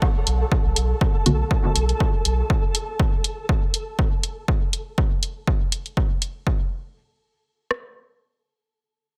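A punchy analog drum machine drives this hazy, cavernous dub techno fragment, its kick and rim click sitting up front until 7.8 seconds beside an electronic hi-hat, both re-recorded in a large room. A round, mellow sine sub bass pumps with sidechain from 0.3 seconds, while a grainy, flickering triangle texture hangs in its own reverb and breathes with the same pumping. At 1.3 seconds a single muted, detuned sawtooth chord stab flashes past through a filter sweep, phaser and dub echo.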